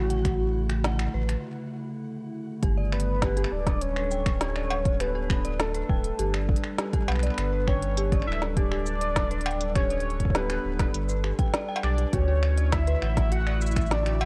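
A dark, warm digital ambience frames this glitchy, wistful IDM fragment at 101 BPM in G lydian, where a velvety synth lead carries the melody over a warbling lo-fi pad, an eerie inharmonic FM bell arpeggiating through chorus, phaser and digital delay, a round sine sub bass up front, a soft electronic kick, and an organic electronic kit of woody snare, crisp hats, cabasa, cowbell and finger snaps, while a very quiet grainy granular texture flickers only until 1.4 s and returns at 13.0 s, the chords moving from Dmaj9 to Gadd9 at 2.6 s after a short break.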